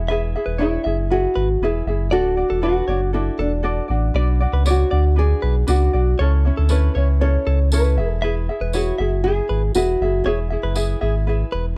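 Acoustic pop at 118 BPM in a straight 4/4, this short excerpt cut from a longer piece feels easy-going and heartfelt. A deep, full sub bass with an added octave sits up front, its sine tone landing with a fast attack and sustaining under the chords as they move from E through D and Bm to A/C# and back to E. A light, fingerpicked ukulele provides accompaniment while a clean, direct-recorded electric guitar plays compressed, picked arpeggios. Carrying the melody is a small-sounding, fingerpicked nylon-string guitar with a warm acoustic tone. A jingly tambourine enters at 4.7 seconds and drops out at 10.9 seconds, and the whole piece has the dry, close feel of a 1970s-style studio recording in a small room.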